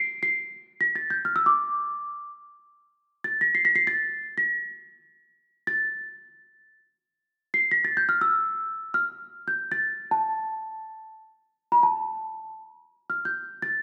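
A solo celesta carries this brief passage, its bell-like, delicate tone sitting up front and ringing high in the register, from A5 to C7. The music belongs to the Arabic maqam tradition, unfolding in free time in maqam bayati on A, with a soulful, hypnotic mood. Medium felt hammers give the notes a sweet, airy quality. A moderate recital hall reverb, about 1.5 seconds long, surrounds the instrument with the resonance of a church or concert hall. Cut from a longer piece, the passage runs about 13.8 seconds, with the opening material returning at 12.7 seconds.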